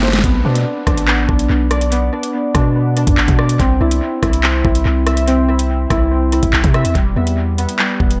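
Warbling, detuned synth keys built from pulse and sawtooth waves play nostalgic lo-fi arpeggios through chorus, a low-pass filter and tape echo, giving this tense, menacing drill excerpt at 143 BPM in a half-time feel its edge over chords moving from Bm to C and landing on Em at 7.0 s. A deep, mellow 808-style sine bass sustains long decaying notes up front, while the electronic drum kit opens on a fill at 0.0 s with a knocking kick, sharp snare, metallic hi-hats, handclaps and rim clicks, tape-warm and touched by echo. The dry, echo-heavy mix keeps every part close and forward.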